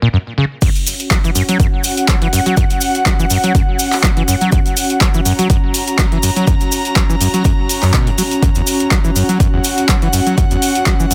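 A dense, heavily limited mix with light reverb carries this trippy, raw acid house excerpt in F# mixolydian at 123 BPM with a 16th-note swing. It opens on a squelchy, resonant sawtooth acid bass riff with a filter sweep, chorus and delay, sitting up front alone before the drop at 0.6 seconds. The drop brings in a punchy, overdriven kick, a tape-toned analog drum machine with metallic hats, handclaps and crash, and a grainy cabasa in the background, while an airy, breathy detuned pad with slow attack and sidechain pumping fades in at 1.0 seconds.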